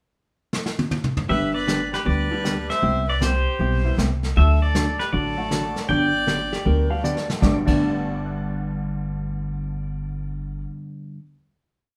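Cheerful and playful, this short western swing country piece in G major moves at 157 BPM with a swung feel, opening with a brushed drum fill on a vintage kit before a thumpy, woody upright bass, four-to-the-bar hollow-body rhythm guitar and a twangy, up-front pedal steel melody with volume swells arrive at 1.3 seconds, together with a rich fiddle harmony line mostly in thirds. A jangly, detuned honky-tonk upright piano adds syncopated comping from 2.3 seconds, while a clean lap steel enters at 6.5 seconds with answering blues licks as the band, heard live in one room with moderate studio reverb, rides a final chord to about 11.3 seconds.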